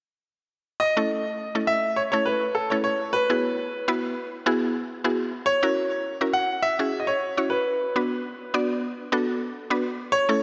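The piano enters first at 0.8 seconds with a clear, polished melody that sits up front, its short-sustained notes trailing into a diffuse ambient delay. A moment later, at 1.0 seconds, a mallet-like synth pluck joins as accompaniment, woody and round with a fast, percussive attack, and a chorus gives its decaying tones a bright sheen. This is a euphoric, carefree pop passage at 103 BPM in a straight 4/4, tuned slightly low with A4 at 439 Hz. The harmony moves from A through Eadd9 and F#7 to Bm before returning to A near the end. A lush hall reverb soaks the mix in a dreamy wash, and the passage, cut from a longer piece, closes at 10.4 seconds.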